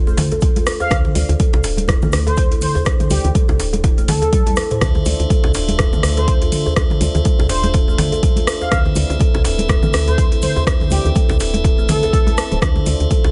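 A small-room, earthy mix carries this afro house excerpt at 123 BPM in D dorian, with a swung sixteenth feel, a deep, overdriven electronic kick up front, a woody, round FM bass pumping under the sidechain, and a metallic-hatted afro-pop kit with rim clicks and toms, while close, dry congas, a cracking djembe with metal rattles and a grainy, very quiet cabasa sit in the background. A buzzing, thumbnail-plucked kalimba spins arpeggios through delay, and from 0.8 seconds a smooth, dark sawtooth lead sings with vibrato and chorus. After a drum fill, a piping tonewheel organ with key click and a stopped rotary speaker enters at 4.8 seconds with stabs over the Dm9 and Amadd9/D chords.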